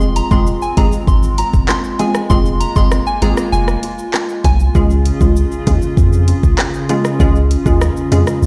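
Dry and close at the source yet heard through a big sound system in a bare stone room, this tough, hypnotic dancehall excerpt rests on an up-front electronic afro-pop kit with a deep kick, dark hats, handclaps, rim click and shaker, under a punchy sine sub bass with a pitch-drop attack. A hollow, flute-like pad holds chorused chords that pump against the beat, while a glassy, crystalline wavetable pluck with a detuned noise layer and filter sweep plays accompaniment, shifting from F minor to D-flat at 4.8 seconds. A soft, pure FM bell carries the melody through chorus, phaser and delay until 4.6 seconds, and round, low-tuned bongos played with soft hands sit in the background.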